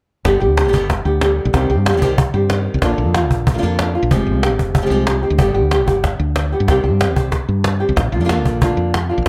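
Fingerpicked flamenco guitar, with audible finger squeak, leads this fiery, passionate flamenco excerpt at 187 BPM, sitting up front over a dark, round fretless electric bass and a woody cajon with faint snares, all captured close and dry as the harmony moves through G, Cm, Bb and Fmadd9.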